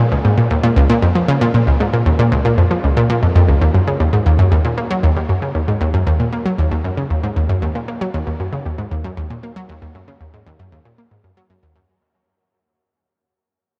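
The recording sounds like worn, warbling old cassette tape, its pitch drifting, all set inside a huge ambient reverb with a long, slow tail. This is an expansive, hypnotic ambient piece in a steady, straight four, cut from a longer work. A single analog pluck synth plays alone from start to finish, spanning low to middle registers with a round, detuned sawtooth and pulse-wave tone edged by a noise layer. Its filter pluck gives each note a fast attack and short decay, while chorus and analog delay thicken and echo the bright, up-front line. A fade-out begins at 3.6 seconds and carries the sound away until the clip ends just before 12 seconds.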